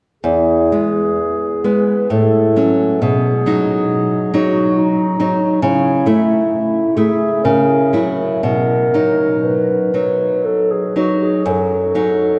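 A cathedral-like reverb with a long 4.9-second decay bathes this brief recording, made in a church or concert hall, in a deep, spacious glow. It is a serene, lyrical romantic duo for clarinet and classical guitar, cut from a longer piece and moving in an unhurried 3/4 between 58 and 71 BPM with a free, rubato feel. The dark clarinet sings the melody from 0.2 to 12.4 seconds in a distant, roomy classical voice, staying within a narrow range from D#4 to B4. Beneath it, the nylon-string guitar accompanies across the same span, sounding small, up front and acoustic, its fingerpicked notes carrying a touch of finger squeak and reaching down to E2. The harmony drifts from E through F#m/A, B, A/C#, F#7/C# and B again before arriving on a D#dim/F# at 11.5 seconds.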